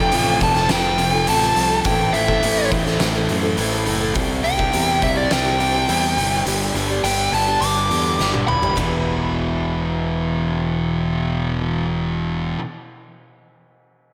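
A lush, wet hall reverb gives this bittersweet, restless quiet-loud alternative rock excerpt a big arena sound. A smooth, overdriven lead guitar plays a solo melody with slapback and tape echo until 8.8 seconds. Beneath it sit an up-front, thick fuzz guitar riff, bright, boxy parlour acoustic arpeggios, a growling fingered bass, and an oversized low-tuned drum kit with a fat snare, punchy kick and dark cymbals in a pumping stone room; a drum fill from 8.2 seconds ends the kit's part, leaving guitars and bass to carry the move into the next section.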